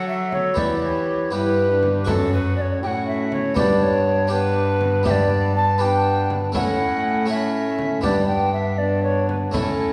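Heard through the generous bloom of a reverberant church or recital hall, this short cut from a stately, courtly Renaissance-style consort dance moves at 80 BPM in 6/8. A pure, distant tenor recorder carries the melody while a second, airy tenor recorder with gentle vibrato and audible chiff plays a higher line, over a brilliant, up-front harpsichord with octave strings and a warm trombone in the background. A nasal, gut-strung cello bows the bass, and a deep frame drum enters at 0.3 s.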